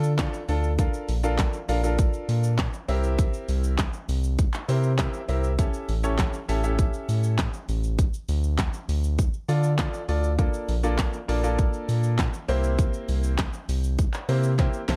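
Energetic and driving, this 15-second dance-pop excerpt in D minor at 100 BPM pairs a punchy, fat-snared pop drum kit of kick, snare, hi-hat, handclaps and shaker with a round, deep analog bass carrying a ring-modulated sawtooth-and-sine tone, while a clear, intimate concert grand piano with audible action noise accompanies through Dm, Bbmaj7, C7 and A7 changes, piano and bass both pumping under sidechain, in a dark digital ambience until a piano fill at 14.0 seconds and a drum fill at 14.6 seconds close it out.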